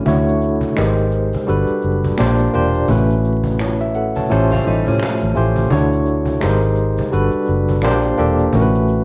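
A rough home-demo mix with vinyl crackle and small-room ambience frames this sensual, soulful neo-soul R&B excerpt at 85 BPM with a 16th-note swing, where a bright, barky tine electric piano sits up front with light overdrive and medium tremolo over a dark, round, foam-muted vintage bass, a distant, snappy cajon played with soft hands, and a faint tube shaker with finger snaps, while a slightly broken-up, lo-fi electric guitar with spring reverb surfaces at the very start and again from 4.3 to 5.7 seconds over an A7alt in a chord cycle moving from Dmaj9 through G#maj9, Gmaj9 and Bb69 to A69.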